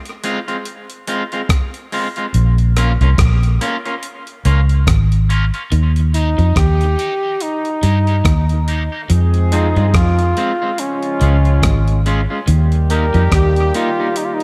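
A swung dub reggae groove opens as a break, with a gritty, compressed sampler-style kit of thumpy kick, hi-hat and rim click sitting up front, while a slightly broken-up, twangy electric guitar plays accompaniment through spring reverb, tape echo and a high-pass filter. At 2.3 seconds a dark, foam-muted, round vintage bass arrives, punchy and heavy in the mix, as a filter sweep begins to move across the sound. From 5.7 seconds the piece shifts into its second part: a mellow, distant horn section with octave doubling plays a tight second line coloured by tape echo, and a second, very quiet picked guitar adds a compressed riff. A smooth-topped flugelhorn then carries the melody with light vibrato and scooped notes, trailed by its own tape echo. The mood is meditative and weighty, the minor-leaning harmony circling back to Fm, with an echo-soaked digital ambience framing this fragment of a longer piece.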